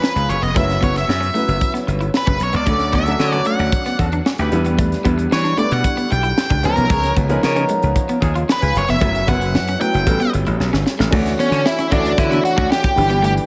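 Breezy and upbeat, this polished 1980s jazz-funk pop fragment moves at 114 BPM in a straight 4/4 in D major, cut from a longer piece. A dark, fuzzed octave-fuzz lead guitar sits up front with distortion and analog delay, carrying a solo from the start until 11.1 seconds, where a drum fill leads into a new section built on a Dmaj9 chord. Beneath it, a brilliant, punchy slap bass drives the low end, while a tight funk drum kit with a high-tuned snare and punchy kick works through crash, hi-hat, kick and snare. A warm baby grand piano with short sustain and lush chorus supplies the accompaniment, and a slightly broken-up, compressed electric guitar with analog chorus plays a riff in the background. A distant, roomy horn section with light vibrato and analog delay adds a second line until 8.8 seconds, over changes that move through chords such as C#13, F#7sus4, Dmaj7 and A13. The dreamy mix is soaked in a moderate plate reverb.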